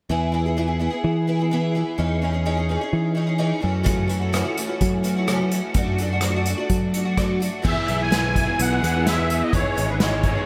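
A straight four-beat pulse is set by a growly, punchy picked electric bass and a shimmering, octave-doubled twelve-string acoustic guitar with analog chorus and a hint of finger squeak, giving this open-road, jangly folk-rock and heartland-rock excerpt its drive. An unplugged drum kit played with bundle sticks joins at 3.9 seconds, with a punchy kick, rim clicks, hi-hat and dark cymbals sitting up front. At 7.6 seconds a raw, overdriven, double-tracked garage guitar riff enters in the background, and a moment later a reedy musette accordion carries the melody through diffuse ambient delay, all bathed in a huge, dreamy reverb.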